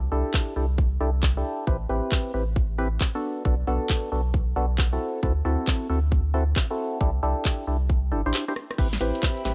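Soulful and skippy, this short cut of two-step UK garage rides a swung sixteenth-note feel in 4/4. A deep, thick saturated sub bass sits up front with sidechain pumping, while a hollow, organ-like percussive stab, wave-folded with a noise layer, runs through chorus, phaser and analog delay and carries a filter sweep across the whole passage. An electronic kick drum with a tight punch and a garage kit of cracking snare, warm hi-hats, rim clicks, handclaps and crash cymbal sit up front, re-recorded in a small room. The chords move from C6 through Am7, Bm7 and D7 before returning to C6, and a brief break at 8.3 seconds carries a drum fill. A rich, bowed violin section enters very quietly at 8.8 seconds with vibrato on sustained chords, all within a dry, gritty, cassette-tinged hardware sound.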